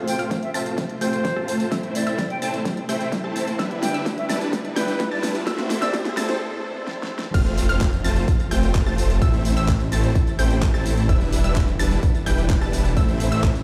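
Emotional and anthemic, this festival progressive house passage opens on a build-up, with huge, detuned supersaw chords riding a filter sweep and pumping to the sidechain while a background pluck traces delayed arpeggios high up. A reedy, airy concert flute carries the melody through digital delay, a faint electronic riser sits beneath, and a very quiet, clear string section holds sustained chords with vibrato. The overdriven pop drum kit, with its fat snare, handclaps, tambourine, hi-hat and crash, plays fills alongside a punchy electronic kick. After a short break from 6.4 seconds, the drop lands at 7.3 seconds, where a thick, saturated saw bass with chorus joins and pumps low beneath the supersaw riff. The mix sits in a bare stone room, as if played over a big sound system, with light digital ambience.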